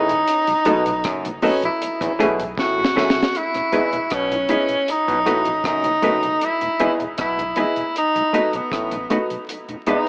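A distant, roomy tenor saxophone sits up front in this laid-back, sunny roots reggae excerpt, carrying the melody with a light vibrato, a punchy edge and a dub echo on its line. At 78 BPM in a straight 4/4 in E major, a woody, boxy upright piano plays short stabs while a twangy, stringy clav riffs low in the background through a combo amp, and a very quiet, clean semi-hollow electric guitar adds fingered accompaniment. A soft tonewheel organ with a flute-like tone runs through a slow rotary speaker with its own dub echo, and a round, deep sub bass sits far back in the mix. The dry, dark drum kit has a tight kick, a high-tuned snare, rim clicks and hi-hat, and plays a fill from 2.6 to 3.3 seconds leading into a new section. The chords move between B7, Amaj7 and Emaj7, all under a touch of reverb with vinyl crackle and an AM radio sound.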